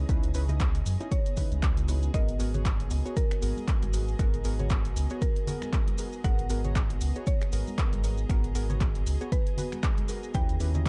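A smooth deep house excerpt in G# minor at 117 BPM opens at 0.0 s on a moody, warbling sawtooth pad, round analog key stabs roughened by 12-bit sampler grit and tape echo, a deep, full sine sub bass with octave up front, and faint silky string-machine and earthy chamber-string textures, with the pad, keys, bass and chamber strings pumping to the sidechain as the chords move from C#m9 to G#m9 before a D#7b9b13 near the end. At 0.1 s a punchy, overdriven kick arrives up front, joined by overdriven snaps, handclaps and hi-hat in a small room, ringing hand-struck bongos and congas, and grainy maracas, all swung on the 16ths. At 1.1 s a woody FM mallet pluck with chorus, cassette-tape character and delay carries a mellow melody through a dark, soft-topped mix.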